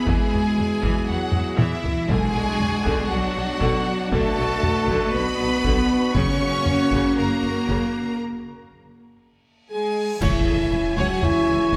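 Epic orchestral film score in B dorian at 118 BPM, this dramatic cut from a longer piece opens with lush, vibrato-laden violins carrying a focused melody over a second violin line, rich chamber violas, smooth cellos and intense bowed double basses, while dark, punchy French horns and a very quiet, clear trombone section hold sustained chords and distant, roomy trumpets add stabs. Heavy-stick taiko drums drive the rhythm with close, dry fills, and round, soft-mallet timpani strike briefly around 2.1 and 6.2 seconds as the harmony moves through E, Bm7 and F#. A break at 8.2 seconds strips away the chords before a huge, bright reverse cymbal builds into a band accent at 10.2 seconds, where dark clash cymbals, concert bass drum and an impact land on C#m, all bathed in a wet concert hall reverb.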